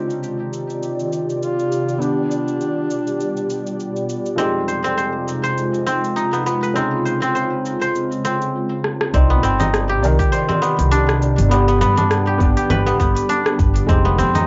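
Organic downtempo at 101 BPM in C harmonic minor, warm and earthy, this excerpt layers a soft felt-muted upright piano with tape echo and an ethereal, airy pad, both pumping with sidechain, beneath a silvery, ringing guzheng playing arpeggios up front, while a very quiet metallic singing bowl hums until 8.5 seconds, a swung organic electronic kit of congas, hi-hat, rim click and shaker keeps time, a mellow vibrato-laden duduk sings a brief folk-style melody from 1.4 seconds, and after a drum fill a growly pizzicato upright bass and a deep, layered electronic kick arrive at 9.1 seconds, all heard through a dull home-cassette recording in a small room.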